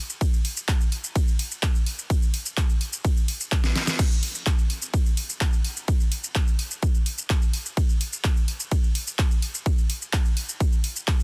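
A punchy, overdriven electronic kick drum sits up front in this euphoric, emotional EDM excerpt at 127 BPM in a straight 4/4, entering at 0.2 seconds and running to the end. Beneath it, a layered pop drum kit with a deep snare, handclaps, hi-hat, shaker, ride and crash cymbals carries its own overdrive and a small-room character, with a drum fill at 3.6 seconds. The sound is dry and dense, with a heavily limited modern master.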